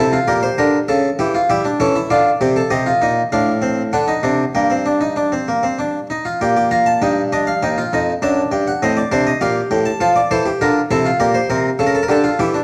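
In a straight triple metre, this solemn, driving baroque-style three-part fugue, cut from a longer piece, features a solo Italian-style harpsichord placed up front and mid-forward, its plucked, brilliant tone thickened by octave strings as it ranges from Eb2 to Bb5 over 12.6 seconds, moving through harmonies such as Gm/Bb, A7/C#, Am7b5 and Ebadd9 within a dark production and a wet recital-hall reverb.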